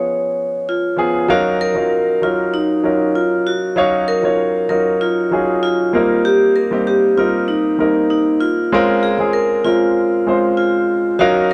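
A light reverb gives this short soul excerpt a gentle sheen, with both instruments placed up front. The mood is romantic and smooth, in a steady straight-feel 4/4. A vibraphone struck with hard mallets carries the melody, its motor off, its tone metallic and ringing inside a boxy small-room sound. A concert grand piano supplies the accompaniment throughout, warm with deep bass. The harmony moves from C#7 to Ebm9 at 1.3 seconds, then to Cm7 and finally Bbm9 at 8.7 seconds, with a new section beginning at that first change and running to the close.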